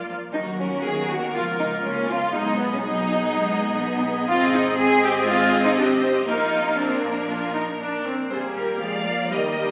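A warm, up-front second violin line with a soft attack carries the most weight in this dramatic, stormy fragment of a quick classical-period movement for string orchestra, its expressive vibrato sitting close to the listener. Above it, a rich violin section sings the melody, while a smooth, even viola section, also prominent though set further back, supplies the accompaniment. A more distant cello section and a dark, close double bass section with a soft attack share the bass, all the strings bowed with vibrato. The harmony opens on brooding minor chords before turning to brighter major ones, and at 8.3 s a new section begins on a settled home chord. The ensemble is bathed in a generous scoring-stage reverb and heard through the crackle of a very old 78 rpm record, lending the passage an antique, storm-tossed character.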